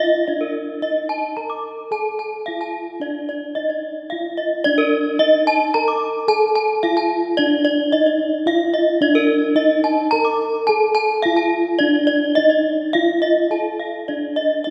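The music moves in a straight, steady four-beat pulse, a brief slice cut from a longer gamelan piece in a pelog tuning, with a ceremonial, shimmering mood. Two bronze metallophones play throughout, both ringing with the beating shimmer of paired tuning. The lower one carries the melody, struck with padded disc mallets for a mellow, dark, smooth tone that sits up front. Above it, the second metallophone spins arpeggios with a horn mallet, its sound bright and airy and also close in the mix. A concert hall reverb with a long tail surrounds the ensemble and places the listener further back in the room, while a short new section begins at 13.5 seconds just before the cut at 14.7 seconds.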